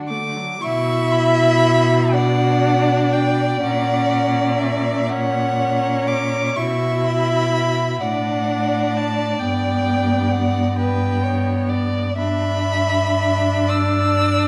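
The first violin carries the melody high above the quartet, its bowed line rich and smooth, with steady vibrato, from 0.1 seconds. The piece is a slow, lyrical and serene romantic movement for string quartet in B minor, unfolding in a rubato 6/8 at around 36-44 BPM counted in dotted quarters. Beneath it, a second violin sings an even inner line, the viola supplies focused accompaniment, and the cello anchors the bass, sitting up front in the balance. The harmony moves from D through B minor, F#/A# and G to Em7/G. A dark production and the reverberant air of a recital hall, with a 1.5-second decay, surround the players in this passage cut from a longer piece.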